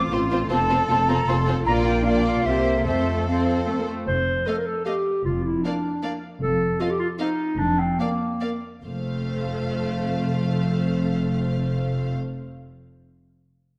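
Lively and graceful, this quick classical-period orchestral passage in 3/4 and F major moves at 137-158 BPM and eases back in tempo midway. Symphonic violins carry the melody with a smooth vibrato over a soft, intimate chamber violin line played sul tasto, while a rich, distant viola section fills in the accompaniment and cellos and a lush, up-front double bass section anchor the low end. An airy concert flute plays a second line until 3.7 seconds, and a roomy solo clarinet enters with its own line at 4.1 seconds, all set in a dark, warm production with the reverb of a scoring stage.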